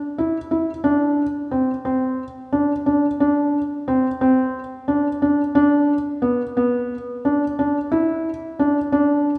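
A felt-muted upright piano carries this brief contemporary instrumental fragment alone, entering at 0.2 seconds and playing until 9.3 seconds within a narrow span from B3 to E4. Its tone is soft and mellow, with the thin felt giving it an intimate, close-up quality that sits up front in the mix. The mood is pensive yet urgent, driven by a brisk 178 BPM pulse counted in eighths and set in an uneven 7/8 metre with a straight feel. Tuned slightly low to A4 = 435 Hz, the piano rings into a generous, wet scoring-stage reverb with a 2.1-second decay, evoking the spacious acoustic of a church or concert hall. The top end is rolled off, lending the sound a dusky, subdued sheen, and the passage is cut from a longer piece.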